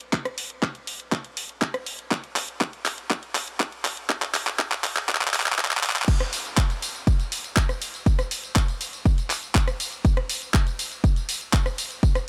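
Lightly reverberant and high-pass filtered with a faint mains hum, this driving, emotional house clip at 121 BPM in straight 4/4 puts a punchy, layered electronic kick and an up-front house drum kit of crash, handclaps, hi-hat, ride, rim click and tambourine, both re-recorded in a small room, through a drum-fill build-up that gives way to the drop at 6.1 seconds.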